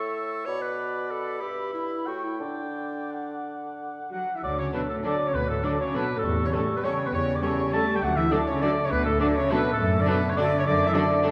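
Set in a wet, reverberant scoring-stage sound, this elegant, festive orchestral ballroom waltz in D major sways in a rubato 3/4 at 167-223 BPM, opening with an up-front mellow oboe, a bright close-miked clarinet, a pure silver flute in the background and a vintage-toned bassoon before the strings and brass arrive between 4.1 and 4.7 seconds, with dark, very quiet French horns and clear, very quiet trombones holding sustained chords, distant trumpets adding stabs, clear cellos and rich double basses carrying the bass, and very quiet violas and a second violin section sitting beneath a lush, vibrato-laden violin melody, while a single round, soft-mallet timpani note sounds at 6.2 seconds.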